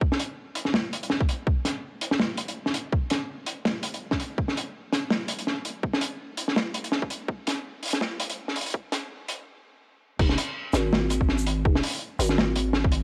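A crunchy breakbeat drum kit drives this dark, cinematic half-time drum and bass excerpt at 165 BPM. Its snare, hi-hat, shaker and crash cymbal sound gritty and saturated, with a rolled-off top and the close feel of a small room. Alongside it sits a hard-clipped electronic kick with a tape-warm edge, both drum parts up front over a groove swung on the sixteenths. The opening is a build-up under a filter sweep, breaking off at 9.5 seconds before the drop. At 10.2 seconds a growling 808-style bass arrives, buzzy and sine-based, with a fast attack and a decaying tail. The whole has the dry, hardware feel of a cassette recording, lightly touched by reverb and thinned at the bottom by a high-pass filter.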